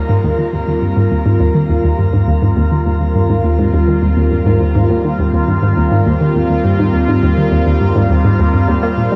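A swirling, phased analog pad holding sustained Ebadd9 chords and a bright, round analog pluck riff, its filter sweeping through tape-tinged chorus and delay, open this cosmic, luminous stretch of ambient, sequencer-driven space music before a very quiet, wave-folded analog drone enters on the bass at 0.9 s, all set in a dark, warm production with a moderate shimmer reverb, cut from a longer piece.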